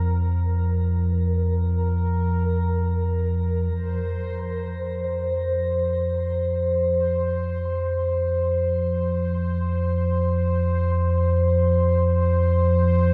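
Dark ambient drone in free time, dark and unsettling, heard as a short cut from a longer piece that rests on an Fsus4 sonority in a vast, echoing cathedral-like reverb. A deep, ominous drone with a rumbling sawtooth-and-triangle tone sustains from F2 to F3 throughout, slow to arrive and long to fade, while a bubbling, resonant sawtooth texture hovers between Bb4 and C5 with random filter steps, soft attacks, chorus and a shimmer reverb. Both parts sit up front for the full 13.1 seconds, with the music shifting into a new section at 3.7 seconds.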